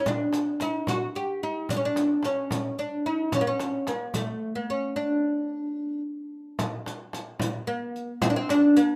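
Lightly reverberant, this short cut from a longer Persian modal ensemble piece unfolds in a stately, warm mood at 74 BPM in 6/8, set in the D chahargah dastgah. A deep, woody, fretless oud, plectrum-plucked on its doubled strings, carries the melody up front between A3 and G4, while a small, bright frame drum and a riq with dark jingles, both played with hard hands, sit lower in the mix from 0.1 s. The music moves into a new section at 6.6 s, with the frame drum dropping out at 8.6 s and the riq at 8.9 s, just before the close at 9.0 s.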